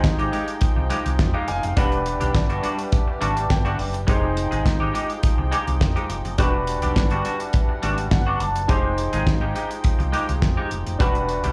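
Up-front, dry 70s drums with a fat snare and tight kick drive this slick, funky early-eighties boogie funk excerpt, joined by a round, dark hollow-body bass, a twangy, compressed clean electric guitar riff with lush chorus and slapback echo, a polished grand piano with audible action noise that adds fills at 2.9 and 7.8 seconds, and a sweet, reedy accordion holding chords in the background, all heard as a live club gig through the venue's PA as Fm9 and Em9 alternate.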